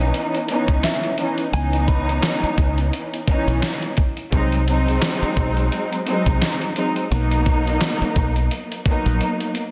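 Dark and tough, this boom-bap hip-hop excerpt swings over a gritty, compressed sampler-style drum kit with a thumpy kick, fat snare, hi-hat and handclaps, re-recorded in a large room and set up front, closing with a fill at 9.2 seconds. A deep, round, foam-muted fingered bass punches underneath, while a veiled, con sordino string section bows lush vibrato chords through a cassette-tape haze, moving from C#m9 to G#7 and Bmaj7. A mellow, clean electric guitar carries the melody in the background with subtle chorus and delay, stopping at 3.8 seconds.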